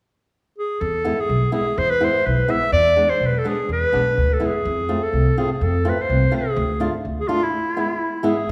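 A straight two-beat pulse in 2/4 drives this festive, soulful klezmer piece, cut from a longer work. A clear clarinet in classical style carries the solo melody up front, entering at 0.6 s and ranging from E4 to E5. An upright bass joins at 0.8 s with woody, growly pizzicato on steel strings, also sitting up front. At 1.0 s a boxy flamenco guitar adds fingerpicked accompaniment, complete with audible finger squeaks. The harmony moves from E to F, dips to D minor and returns to E, all within a single section. The parts sit in a wet recital hall acoustic, lending the performance the resonant air of a church or concert hall.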